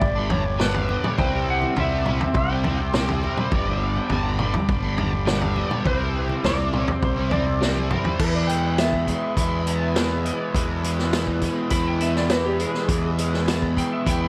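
Hypnotic and trippy, this psychedelic rock excerpt at 103 BPM moves from G and Cadd9 to E, with a dark, clean lap steel carrying the melody through tape echo and turning into a slide solo at 8.2 seconds, over a buzzy combo organ, a fuzzed fingered bass, a double-tracked crunchy guitar riff with flanger and tape echo, a vintage drum kit with a punchy kick, dark cymbals and a fill just before 8.2 seconds, very quiet damped congas, and a reedy pedal harmonium drone entering at 8.2 seconds, all in an echo-heavy small-room mix.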